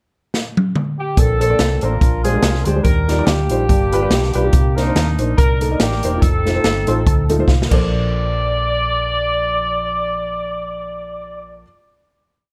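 Reverent yet jubilant, this short, uptempo gospel piece swings in four, opening with a drum fill in the pickup before the band settles into a driving two-beat praise groove. The swinging big-band drum kit sits up front with a punchy kick, a medium-tuned snare and an airy, polished studio-room sound, playing crash, hi-hat and toms until 7.8 seconds, with a last fill leading into the final hit. A tight, up-front horn section carries the melody in motif-based period phrases, its tone vintage with a light vibrato and a jazz-section feel. Beneath it, a worn, woody upright piano, slightly detuned with short sustain, comps off-beat chords in drop2 voicings and adds short fills, including one from 6.6 seconds. A round, amped hollow-body electric bass walks and runs with chromatic approach notes through rich chords such as Bbmaj9, G7 and Cm9, and the piece ends on a final hit held by horns, piano and bass in a dark production with light reverb.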